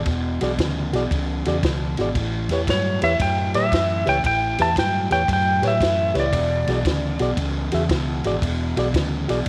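Light reverb and a small-room ambience give this short cut from an electric blues shuffle a laid-back, gritty feel. The swung groove rests on a dry cocktail kit with dark cymbals, a high-tuned snare and a tight kick, together with a round, punchy foam-muted bass, an overdriven hollow-body guitar picking a low riff, and a reedy, bright electric piano in clean accompaniment. At 2.7 seconds a clean, compressed lap steel steps up front with a slide melody and volume swells, its slapback echo trailing it until 7.2 seconds, as the chords move from E7 to A7 and back to E7.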